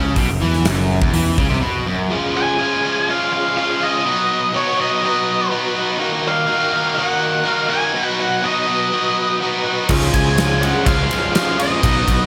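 A driving, confident classic rock cut in 4/4 at 123 BPM opens on a bright, overdriven semi-hollow guitar riff up front, doubled by a quieter picked guitar with slapback echo behind it, over a growly picked bass and a huge arena kit with a fat snare, punchy kick and bright cymbals, before a short break at 1.6 seconds. From 2.1 seconds the rhythm section drops away as a piping tonewheel organ sustains chords through a slow rotary speaker with key click and chorus vibrato, and at 2.4 seconds a dark octave-fuzz lead guitar sings a melody through distortion and digital delay over C#, B and D#m changes. Bass, drums and the echoed guitar return at 9.9 seconds, all set in a lush hall reverb that gives the mix a big arena sound.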